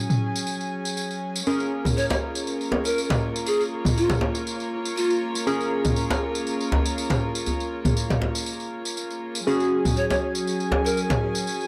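Driving and warm, this afro house cut from a longer piece moves at 120 BPM in Bb minor with a light swing, as overdriven, layered electronic toms, a jingly vintage tambourine and a deep, up-front djembe arriving at 1.9 s propel round, detuned analog key stabs soaked in chorus and dub echo over distant, reedy chamber strings holding Gbsus2 and Bbm7 chords, while breathy, bright cane pan pipes with vibrato and delay sing the melody from 2.0 to 5.3 s and return at 10.0 s, all within a dark production touched by plate reverb and small-room ambience.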